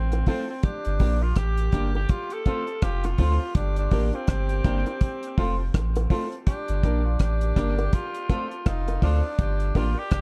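A dark, dry production frames this hypnotic, meditative roots reggae groove at 82 BPM in G minor, where a round, mellow sub bass and a drum kit with a tight kick, hi-hat and rim click sit up front, quiet high-tuned bongos sit underneath, a clean picked electric guitar with tape echo and a worn, slightly detuned upright piano playing stabs stay in the background over an F to G minor vamp, and a raspy, gritty tenor saxophone carries the melody through tape echo while a distant, lightly vibrato-tinged second tenor saxophone, also echoed, adds a softer line from 0.6 s.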